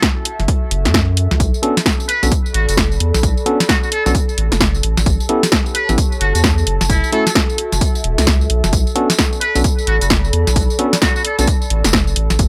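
UK garage two-step at 131 BPM in B minor with a 62% swing on the sixteenths, this moody, skippy excerpt pairs an overdriven electronic kick and a punchy, up-front analog drum machine of hi-hat, snare and tambourine with a deep, saturated sub bass entering at 0.4 s, bright, clean tine electric piano stabs with tape echo from 1.6 s, and a buzzy, distant jazz-style solo on trumpet with metal mute and vibrato from 2.1 s, all over a smooth sawtooth pad and a warbling, nostalgic tape-like pad, both chorused and sidechain-pumped in the background, moving through F#m7, Bm7 and A7 in a dry, gritty hardware sound.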